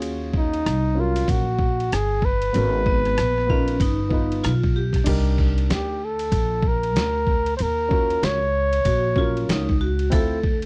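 A dry, close recording in a 1970s studio style carries this smoky, cool jazz-hop fragment, its swung groove set by a gritty, compressed sampler-style drum kit with a thumpy kick and a woody, growly pizzicato upright bass, both up front. A mellow flugelhorn with a soft attack and scooped notes takes the solo melody, while an intimate grand piano with audible action noise and short sustain plays the chords beneath it. A bright, metallic vibraphone struck with hard mallets rings with fast motor vibrato as a second line, entering at 2.9 seconds and again at 8.9 seconds.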